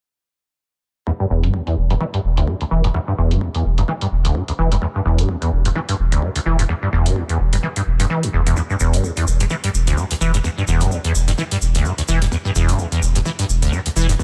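Set in a digital ambience, this hypnotic, raw acid house excerpt at 128 BPM in E minor puts a squelchy, resonant sawtooth acid bass up front, its filter sweeping throughout under tube saturation, lush chorus and tape echo, while a round sine sub bass holding E1 pumps from sidechain with a filter sweep of its own. A deep analog kick sits farther back beside metallic hi-hats, both tape-coloured and re-recorded in a small room, carrying a gentle 16th-note swing over a single Em chord. At 8.6 s a grainy, bright shaker from a live room joins the groove.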